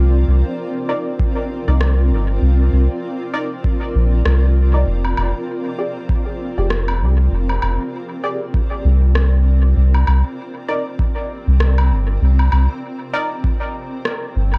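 A round, up-front sub bass anchors this meditative, spacious ambient dub excerpt at 98 BPM with a swung 16th-note feel, beneath a blurred, evolving granular cloud pad drifting through Cm9, Fm69 and C7sus2, muted, detuned chord stabs with lush chorus and dub echo entering at 0.9 seconds, a deep overdriven electronic kick from 1.2 seconds, and an overdriven electronic rim click and woodblock heard in a large room and trailed by dub echo, set in a dark digital ambience.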